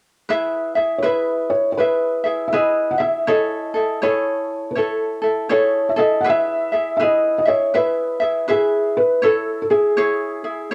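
Relaxed and sunny, this short Hawaiian excerpt rolls along in 4/4 with an easy swung lilt. A bright, light fingerpicked acoustic ukulele opens the accompaniment at 0.3 seconds. At 1.0 seconds a felt-muted upright piano takes the melody: soft, dark and intimate, with thick felt and audible action noise, placed up front and touched by plate reverb. The harmony sways gently between E and A major seventh, and a second section begins at 6.3 seconds. Both instruments carry the colour of cassette tape, set in a damp, close booth that gives this homemade recording a snug, lived-in character.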